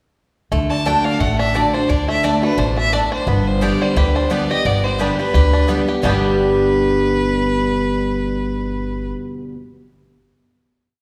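A swung two-beat pulse at 174 BPM drives this short, virtuosic bluegrass piece in G major, where a dark, thumpy pizzicato upright bass plays root and fifth, an up-front, full-bodied dreadnought guitar alternates bass and strum with bass runs, a twangy, percussive banjo rolls with fingerpicks, a woody mandolin chops the off-beats in the background, and a clear, intense bowed fiddle with light vibrato runs an eighth-note tune from 0.7 s over chords moving from D to G, all ringing in a reverberant recital hall before landing on a final chord at 6.0 s.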